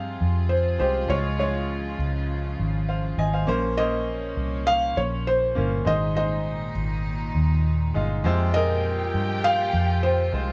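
Pop in F minor at 101 BPM, earnest and bittersweet, this short cut from a longer piece sets a soft, felt-muted upright piano melody with audible action noise over a brilliant, woody second upright piano accompaniment and a round, punchy, foam-muted electric bass sitting up front. A studio string section holds reedy, gut-string sustained chords beneath, while a dark violin section joins at 8.2 s with a lush second line full of vibrato and portamento. The chords move from Fm through Db, Bbmadd9 and Ab back to Fm, and the band plays live together in one room with moderate reverb.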